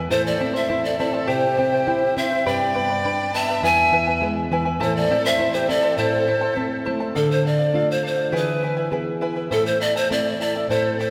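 A long church reverb surrounds this short cut from a longer Andean folk piece, giving an earthy, melancholic mood a spacious, resonant glow. At 102 BPM in a straight 2/4, in A minor tuned to A4 = 444 Hz, a bright, shimmering fingerpicked charango with double strings and a full-bodied, deep classical nylon-string guitar, also fingerpicked, carry the accompaniment from the first moment. Up front, a breathy bamboo pan flute takes the melody, its crisp attack and chiff giving each note an airy edge, coloured by vibrato. Behind it, a single close, bowed violin adds an expressive second line with soft attacks, vibrato and portamento, dropping out at 6.8 seconds and returning briefly at 10.7 seconds. The harmony cycles through Am, C, G and E before shifting at 7.2 seconds into a new section built on Dm, E and Am.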